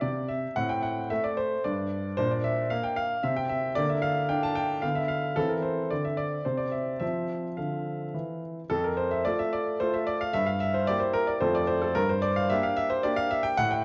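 A dark, reverberant recital-hall sound surrounds an up-front solo baby grand piano, intimate and natural with audible action noise and long sustain, as it plays a playful, graceful classical-period sonatina in F major at 111 BPM in a rubato 3/4, its opening idea giving way to a contrasting passage at 8.7 seconds before this short excerpt reaches a G minor chord at 12.0 seconds.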